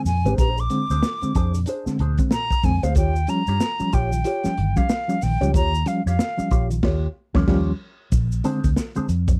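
Gritty and funky, this 93 BPM groove in B-flat mixolydian swings its sixteenths over a dry, close 1970s-style studio sound, with a crunchy breakbeat kit and a foam-muted, round fingered bass sitting up front while a reedy, slightly out-of-tune electric piano adds overdriven stabs through fast tremolo. An airy silver concert flute with vibrato and a soft attack carries the melody until 6.7 seconds, with a band accent arriving at 6.8 seconds, as a mellow wah guitar plays clean, compressed accompaniment and a grainy tube shaker ticks in the background. The chords move from Bb9 to Eb9 at 3.0 seconds and return to Bb9 at 8.1 seconds in this short cut from a longer piece.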